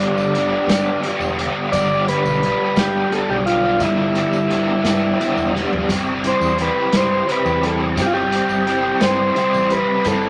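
Kaleidoscopic and hypnotic, this excerpt of psychedelic rock in a straight 6/8 at 58 BPM in G major sets a reedy, overdriven combo organ melody bathed in spring reverb up front beside a double-tracked, picked semi-hollow guitar riff spun through a rotary speaker, over a round, growling overdriven bass, a vintage drum kit with a punchy kick, medium-tuned snare and rolled-off top in a pumping small room, and a jingly tambourine in the background, with a drum fill at 5.5 seconds leading the harmony from G to C over G at 5.9 seconds.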